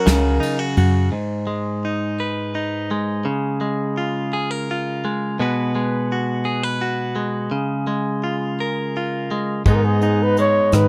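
A breathy, whispered flugelhorn carries the melody in this heartbroken, intimate acoustic folk-pop ballad, its mellow jazz-style phrasing marked by vibrato, scooped notes and a soft attack. It sounds briefly at the very start, then returns at 9.7 s. A bright, twangy clean electric guitar, picked and compressed and sitting up front, holds the accompaniment throughout in a slow 6/8 lilt. From 1.1 s to 9.7 s the guitar plays alone over a simple minor-leaning progression. A woody, round fretless bass with a dark tone and lush chorus joins the flugelhorn at both ends, alongside a soft brush drum kit with a medium-tuned snare and tight kick. Close, detailed microphones and light reverb keep this short fragment of a longer piece feeling near and personal.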